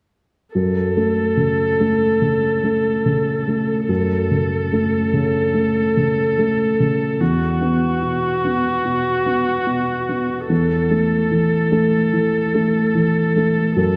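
Reflective and fragile, this rubato neoclassical fragment, cut from a longer piece, sets a mellow, boxy baby grand piano in its low register beside a single woody bowed viola played sul tasto with vibrato, both dark, up front and entering together at 0.6 s, as the harmony drifts from F#m through Esus2 to A5/E within the bloom of a wet concert-hall reverb.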